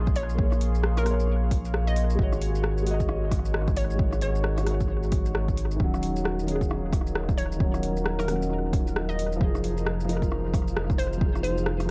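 An echo-heavy, cassette-tinged future garage excerpt in Eb dorian at 133 BPM with swung 16ths, melancholic and nocturnal, where a felt-muted upright piano with tape echo and a deep, moody ambient pad carry the chords over a round, up-front dub sub bass, all three pumping to the sidechain, while a punchy overdriven electronic kick and a deep house kit of metallic hats, rim click and shaker drive the groove, a hollow, bouncy square pluck traces the melody from 0.2 seconds, and a very quiet flickering, grainy texture joins at 6.8 seconds.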